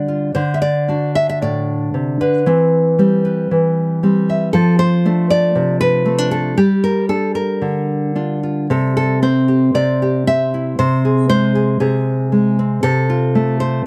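Close, detailed microphones and light reverb frame this short folk excerpt cut from a longer piece, where a lone nylon-string guitar, warm and up front, is fingerpicked in a classical manner at a rubato 116 BPM in 4/4, moving peacefully and nostalgically from D through Cmaj7/E, F6 and Gm7 before a second section from 8.7 seconds turns to Am7/C, Ab/C and F/C.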